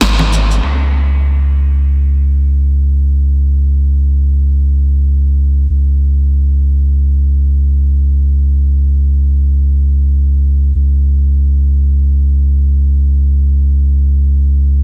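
A round, sine-like sub bass sits up front for the whole excerpt, its fast attack giving way to deep, sustained, mellow tones that set a hypnotic mood in this organic downtempo piece in free time. At the very start, a layered electronic deep house kit of congas, crash cymbal, shaker and punchy snare hits a brief accent with the bass, muffled by low-pass filtering and gone by 0.8 seconds. The dry, densely limited master keeps the low end close and dense.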